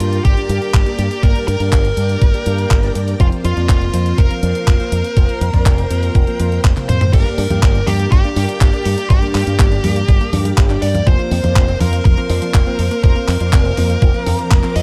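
Italo disco at 122 BPM in G minor, danceable and bittersweet, this cut from a longer piece moves between Gm and Fsus4 as a dark, overdriven lead guitar carries the melody through digital delay over a thumpy, up-front electronic kick and a punchy, envelope-filtered fingered bass with tube saturation. A clean 12-bit drum machine adds congas, handclaps, hi-hat, toms and crash cymbal in a small room, with a drum fill at 6.6 seconds. Behind them, a lush string machine holds slow-attack chords and a glossy, chorused polysynth plays mellow stabs, and a very quiet, nasal analog pluck joins with arpeggios at 7.1 seconds.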